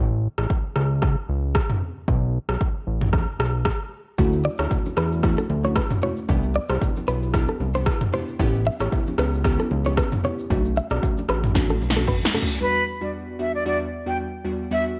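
A fat, detuned analog bass opens this sunny, joyful afrobeats excerpt at 114 BPM, joined almost at once by an overdriven deep house drum kit with a deep kick and punchy snare, then at 4.2 seconds by glassy, chorused digital keys and very quiet, low-tuned congas, with a bright, clean, direct-recorded electric guitar riff with delay soon after, before a drum fill and a reverse cymbal lead at 12.6 seconds into an airy, expressive jazz flute melody with vibrato and delay, the whole recording carrying light reverb and a worn, warbling cassette-tape pitch drift.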